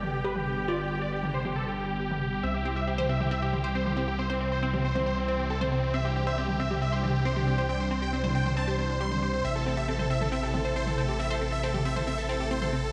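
A huge, euphoric supersaw lead soars up front over a silky analog string pad, a gritty, saturated synth bass and overdriven electronic toms in the background in this uplifting C major trance excerpt at 137 BPM, where a glassy wavetable pluck with 12-bit grit gives way at 2.4 seconds to a round, nasal analog pluck playing arpeggios, all washed in a dreamy plate reverb as the chords move from G to C to Am.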